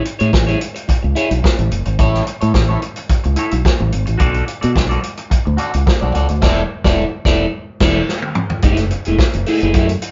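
A twangy, slightly broken-up electric guitar with phaser opens this glamorous, danceable disco excerpt at 108 BPM in A major. A vintage drum kit with a punchy kick, medium-tuned snare and dark cymbals joins almost at once, along with a bright, fingered electric bass, all sounding up front in a single studio room with moderate reverb and a dull top end. The chords move from Amaj7 through Bm7 to E7sus4, where a band accent from 6.4 seconds and a drum fill at 8.1 seconds lead into a new section on F#m9 at 8.6 seconds.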